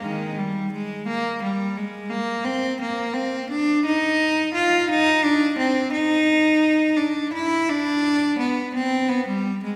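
Bathed in the lush reverb of a church or concert hall, a single bowed cello sits up front with a clear, intense tone, light vibrato and an airy quality to the bow. This serene, radiant baroque-style suite movement for unaccompanied cello moves at 86 BPM in 4/4 with a free, rubato feel, tuned to A4 = 439 Hz. Spanning Eb3 to F4, the solo line fills the full 9.8 seconds of this fragment cut from a longer piece.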